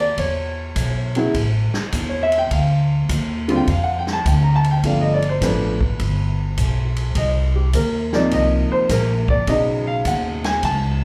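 A playful, swinging 4/4 at 103 BPM drives this jazz piano trio fragment, captured live through a club's PA with light reverb and the murmur of the room around it. A warm grand piano takes the melody as a solo the whole way through, its slapback echo trailing each phrase over Dm, G7, Cm7 and Badd9, while a woody, growly pizzicato upright bass sits up front. A big-band drum kit with a medium-tuned snare, punchy kick, hi-hat and ride cymbal joins at 0.2 seconds.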